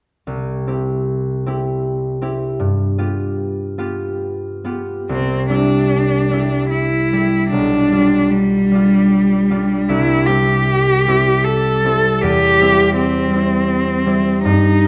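A lyrical, serene romantic classical duo in C major and 3/4, drifting with rubato between 65 and 83 BPM, opens with a ringing, fingerpicked concert harp alone at 0.3 seconds before a single bowed cello, rich and focused with vibrato and a smooth top, takes up the melody at 5.1 seconds, both instruments sitting up front in a reverberant recital hall in this passage cut from a longer piece.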